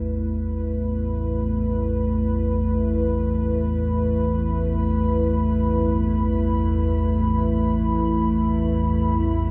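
This desolate dark ambient drone opens at once with a deep, rumbling low drone, an up-front dark analog pad holding sustained chords, and faint gamelan-type bossed gongs playing arpeggios, all sounding from 0.0 to 9.5 s in free time. The drone sits between A1 and E2, its ominous, wave-folded tone entering on a slow attack and lingering through a long release, thickened by lush chorus and its own built-in reverb. Above it, the pad spans A3 to B5 on an Asus2 chord, a moody, detuned blend with a sub octave, dressed in chorus and shimmer reverb. The gongs have a metallic, bronze, round and beating ring, close-miked and dry, yet they stay barely audible beneath the other parts. The dreamy mix is soaked in a huge reverb with a 7.5-second tail and carries a cassette tape character, and the passage is cut from a longer piece.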